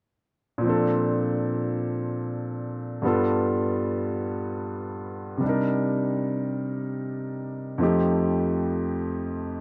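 A slow swing at 50 BPM in 4/4 carries this short jazz fragment, its eighth notes lilting with a gentle triplet lean. A clear grand piano plays the accompaniment alone from 0.6 to 9.6 seconds, voicing chords in a range from F2 to Bb4. In Bb major, the harmony moves through Bbmaj9, G7, Cm9 and F7, giving the passage a romantic, late-night mood. The piano sits up front with a natural tone and long sustain, so each chord lingers. A light reverb softens the dry, close sound of a 1970s-style studio, and the fragment feels cut from a longer piece.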